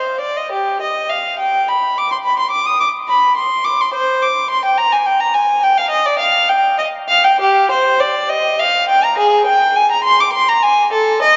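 The rhythm moves in a flowing 12/8 at 69 BPM, counted in dotted quarters, with uneven beats and free rubato that give this solemn baroque-style suite movement an unhurried, breathing pulse. A single bowed violin plays alone throughout, ranging from G4 to Eb6, with a nasal, reedy gut-string tone in period style that sits up front. It moves from C minor into Eb major at 7.4 s, inside a dark, cathedral-sized reverb whose long 4.7-second tail lingers around every phrase of this short fragment from a longer piece.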